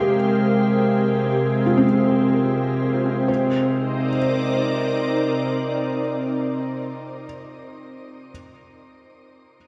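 A bright, pure organ-like pad sits up front in this serene, melancholic ambient fragment, holding sustained chords with slow attacks and long releases through its ensemble chorus and shimmer reverb before it falls away at 6.6 seconds. Beneath it, a mellow felt-muted upright piano plays intimate arpeggios with its action noise audible, trailed by tape echo and shimmer, and carries on alone until 8.3 seconds. The harmony moves from Fmadd9/C to Cm7 at 3.3 seconds, all set in the long wash of a concert hall.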